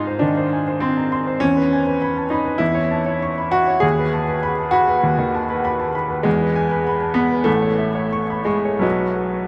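A clear, intimate baby grand piano sits up front, its action noise audible as it plays a hopeful romantic character piece in E major at 99 BPM in 4/4, shaped with rubato and ranging from A1 to C#6. The harmony moves from Ab through E, A69/E and B7/D# before settling on E, A and B, all within this 9.5-second excerpt cut from a longer piece. A huge, wet reverb with an 8.6-second decay places the piano in a vast, echoing space.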